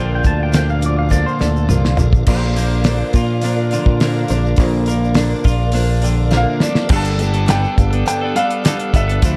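An echo-heavy mix with light small-room reverb carries this wistful, dusty folk and heartland rock excerpt at 104 BPM, where a clean pedal steel guitar played with fingerpicks and volume swells opens with a solo before dropping out at 4.6 seconds, over a twangy, compressed twelve-string electric riff, a growly, up-front fingered bass, a damped 70s drum kit with a fat snare and tight kick from 0.2 seconds, a fresh-stringed picked acoustic guitar and grainy tube shaker in the background, a very quiet, piping tonewheel organ holding chords through a slow rotary speaker, and a worn, woody, slightly detuned upright piano adding a fill, until a brilliant baby grand piano takes the melody at 6.4 seconds as the harmony moves from Bb to Gadd9.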